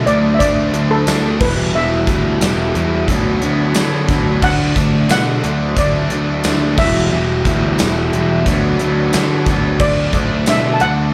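A shimmering, metallic steel pan carries the melody through this brooding, driving classic rock excerpt at 89 BPM in 4/4, its lead line sitting mid-forward with slapback and tape echo. Beneath it, a dark, round fuzz bass sits up front with a punchy edge. Two overdriven, picked electric guitars play riffs: a bright, raw garage guitar with slapback echo, and a hollow-body semi-hollow guitar tucked in the background through spring reverb. A polished gated 80s drum kit enters at 0.1 seconds with an airy, big-room sound, a tight kick, a medium-tuned snare and crash cymbals. A very quiet tonewheel organ holds thick sustained chords through a slow rotary speaker, and a jingly tambourine is barely audible from 1.1 seconds. The chords cycle through D, Emadd9 and Bmadd9/D, and the performance comes across as a live gig heard through the venue's PA, with club reverb.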